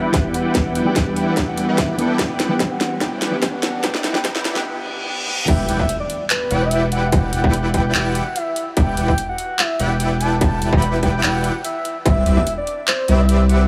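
Bittersweet and lush, this future bass excerpt at 146 BPM in E minor opens with a build-up where a round, wave-folded octave-layered synth lead with chorus and dub echo carries the melody over a dense, detuned supersaw riff, a clean, dark electric guitar with digital delay and sidechain pumping, and a very quiet ethereal pad, all under a filter sweep while trap drums with a sharp snare and metallic hats roll through a fill and a riser and reverse cymbal climb. At 5.5 seconds the drop lands with an impact, as a thick, saturated sine sub bass and a dreamy, airy arpeggiated lead in the background join the distorted, tape-warm kick in a half-time groove, with sidechain pumping on the synths and bass. The harmony moves from Em7 to Cmaj9 at 12.1 seconds, in light reverb and digital ambience.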